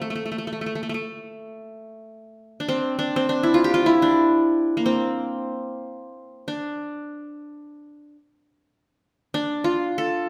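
Set in a moderate recital-hall reverb, this short cut from a longer Turkish makam ensemble piece in D makam nihavent, tuned to A4 = 442 Hz, unfolds in free time as a solo acoustic qanun, up front and played with fingerpicks, rings its bright-edged triple strings between A3 and A4 from 0.0 to 10.3 seconds in a melancholic, soulful mood.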